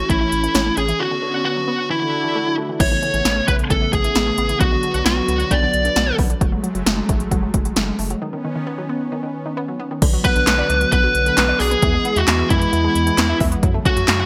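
Wistful yet bright, this synth-pop excerpt moves at 133 BPM in a straight 4/4, built on a punchy deep house drum kit with gated reverb and a deep, round analog bass with a sine-like tone. A brassy, airy analog pad holds sustained chords with chorus and vibrato, while a lush, detuned unison pluck plays arpeggios in the background through chorus and digital delay. Up front, a compressed fuzz lead guitar carries the melody, dropping out at 6.1 seconds and returning at 10.2 seconds, all within a bright 1980s-style digital production and plate reverb.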